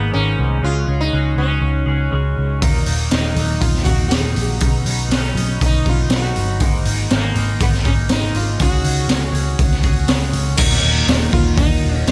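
A reverb-soaked studio sound frames this mysterious, hypnotic psychedelic rock piece at 120 BPM in Eb minor, where a buzzing, shimmering sitar melody with tape echo and a twangy, double-tracked guitar riff through a phaser ride over a dark, foam-muted bass and a flute-like tonewheel organ on a slow rotary speaker in the background, before a saturated, gritty garage drum kit with a boomy kick and a high-tuned snare arrives up front at 2.6 seconds and distant, low-tuned congas join very quietly at 3.4 seconds.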